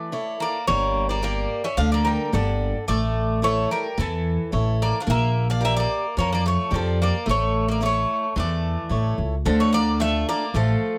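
Brooding and moody, this short Greek folk excerpt from a bouzouki band moves at 109 BPM in a straight 4/4, in D harmonic minor, with a metallic, up-front bouzouki carrying the melody through plate reverb while a second bouzouki, its double strings partly octave-doubled, plays a lower line beneath. A picked archtop guitar with fresh strings adds boxy, bright accompaniment, and a woody, thumpy upright bass played pizzicato enters at 0.7 seconds, sitting prominently in the mix. The harmony circles between A and chords such as Gm and Bb6 before settling on Dm as a new section begins at 9.5 seconds, all within a lightly reverberant space.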